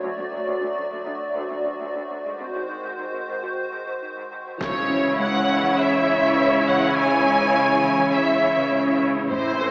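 Thinned by a high-pass filter into an AM-radio tone and set in a moderate scoring-stage reverb, this vast, brooding hybrid orchestral and electronic film-score excerpt opens on a hollow, flute-like pad with ensemble chorus holding sustained chords, distant, rich cellos carrying the bass, and a ringing, harp-like synth pluck playing arpeggios through chorus and digital delay in the background during a build-up with a filter sweep, until at 4.6 s a huge, bright impact arrives alongside very quiet taiko drums struck with hard sticks, while clear, up-front violins take the lush, vibrato-laden melody over expressive viola accompaniment with portamento.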